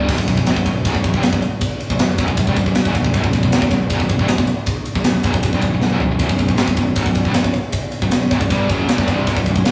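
A high-gain distorted guitar and a fuzz-toned picked electric bass open together at the very start, with a tight metal drum kit joining at 0.1 seconds, launching straight into a heavy, aggressive heavy metal riff in a straight 4/4 over a B5 chord. The double-tracked guitar sits up front, bright and saturated, driving the riff. Beneath it the bass growls in the background, overdriven and direct, reinforcing the low end. The acoustic drums sound polished and airy, with a tight kick, a medium-tuned snare, bright crash and ride cymbals, and toms, and the kit plays a short fill at 5.8 seconds. Light reverb, tube saturation and a small-room ambience give the whole cut the rough feel of a rehearsal-room recording, cut from a longer piece.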